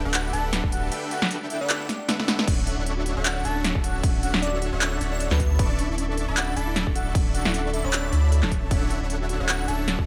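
A half-time future bass groove at 154 BPM in D major, swung on the 16ths, drives this lush, euphoric excerpt, with a punchy, up-front electronic kick entering at 0.6 seconds alongside a big-room dance kit of crisp hats, handclaps, snare and crash that plays a fill between 1.9 and 2.5 seconds. A huge, detuned supersaw riff and a deep, saturated sub bass pump against the kick from the start, while an airy, dreamy lead carries the melody through chorus and tape echo over chords moving from A7sus4/D through Dmaj9 and F#m7/D. A round, tine-like thumb-piano pluck adds background arpeggios from 2.5 seconds, and a very quiet, distant symphonic string section sustains biting chords beneath it all in a digital ambience.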